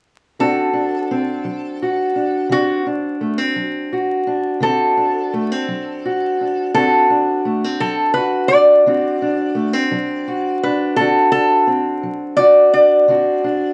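Acoustic country blues with a laid-back, swaggering 12/8 sway, where a metallic, nasal lap resonator guitar, played with fingerpicks and slide and bathed in plate reverb, carries the melody up front over a boxy, fingerpicked parlour steel-string guitar resting on a D7 chord from 0.4 seconds, all framed by a snug booth ambience, a dark production and vinyl crackle in this brief excerpt from a longer piece.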